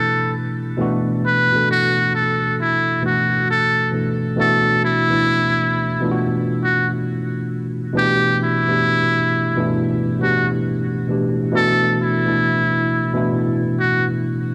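A slow hip hop groove at 67 BPM in 4/4, swung on the sixteenths, carries this melancholic, nostalgic fragment in B minor, moving from G/B through Bm7 to Em7 and back to Bm7 by 11.5 seconds. A worn, slightly out-of-tune tine electric piano provides mellow, up-front accompaniment, while a trumpet with a metal mute plays a thin, buzzy jazz-style solo melody with light vibrato and a soft attack, ending at 14.0 seconds. Both parts pass through a cassette-tape and low-pass coloring in a light studio reverb, giving the home cassette recording a hazy, lo-fi character.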